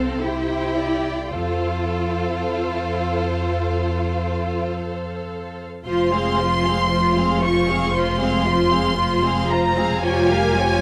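This is a short cut from a slow, romantic classical movement for string orchestra, serene and warm, at about 52-58 BPM in 4/4 with a flexible, rubato feel. From the opening, all five string sections play together: violins carry the melody high above, smooth and close with lush vibrato, while a second violin line sings expressively beneath them. Violas fill in the accompaniment with a clear, focused tone, and cellos join the double basses on the bass, the cellos adding expressive portamento while the basses stay rich and even. The harmony settles in F major before darkening to F minor at 5.9 s, and a Gm7b5 over F arrives near 10.0 s just before the cut at 10.8 s. A moderate scoring-stage reverb surrounds the ensemble, giving the bowed sound a gentle, spacious glow.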